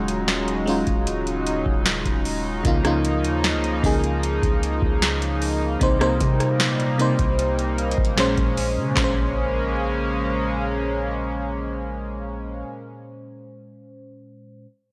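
Contemporary R&B with a moody, late-night feel, cut from a longer piece: a booming analog drum machine with deep kick, crisp snare, metallic hats, handclaps and rim clicks sits up front until 9.2 seconds, under a glassy, bell-like chorused FM electric piano, a shimmering, retro pulse-width pad with sidechain pumping, and a long, dark 808-style sine bass, all through a dry, gritty cassette-tape sound with digital ambience, over chords moving from Ab7sus4/Eb through Db69 and Cm7 to Bbm9 before the piano carries on alone to 14.6 seconds.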